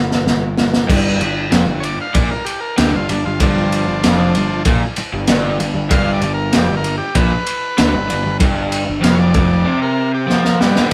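Garage rock at 96 BPM in a raw, rowdy mood, this short cut opens with fuzz-laden picked electric bass, quickly joined by a drum fill from a crunchy, gritty breakbeat kit with dark cymbals and a punchy kick, before a double-tracked, overdriven garage guitar riff arrives on G at 0.9 seconds and a buzzy vintage combo organ carries the melody from 1.8 seconds, all played live in one room with light reverb and a closing drum fill at 10.3 seconds.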